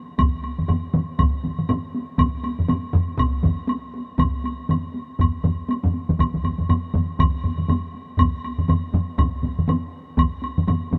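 Ceremonial and powerful, this short cut from a longer Japanese traditional taiko drum ensemble piece swings its sixteenths in 4/4, with four taiko parts pounding from the start (one struck with hard sticks in a small room, three with heavy sticks and miked close, one of those dry) until one drops out at 10.3 seconds, while a woody, dry woodblock clicks alongside, all under light reverb.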